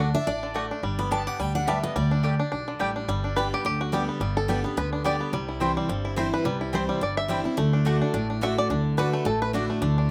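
Bluegrass with a driving, virtuosic swing: a bright, full-bodied dreadnought guitar with fresh strings and audible finger squeak takes the solo until 3.1 seconds, then a twangy, percussive fingerpicked banjo with slapback echo steps up front for its own solo, while a woody double-strung mandolin adds stabs and a thumpy gut-string upright bass anchors the low end, all in a dry, open-air sound.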